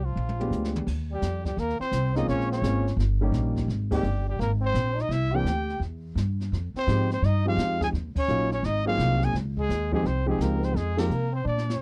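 Swinging and sophisticated, this small-group swing and bop excerpt moves at 170 BPM in Eb major, with a woody, thumpy upright bass up front and a soft-attacked trumpet with vibrato carrying the melody over a forceful, distant trombone second line. A brush kit with dark cymbals and a boomy kick opens with a fill at 0.2 seconds, and a concert grand with deep bass comps from 0.4 to 11.1 seconds. The whole band hits accents at 3.9, 8.1 and 10.9 seconds in a dry sound.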